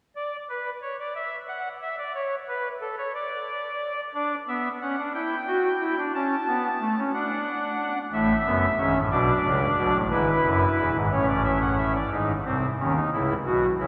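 This is a lively, elegant baroque-style three-part fugue for solo pipe organ in D major, moving at 60 BPM in dotted quarters in a straight 6/8. A soft reed voice with an oboe solo stop, romantic voicing and tremulant sits up front, spanning from a deep E1 to A5. After an opening passage that sits outside any chord, the harmony settles on D at 4.1 seconds and turns toward C#m by 13.1 seconds. The organ rings in a lush cathedral reverb heard from further back in the room, in a fragment cut from a longer piece.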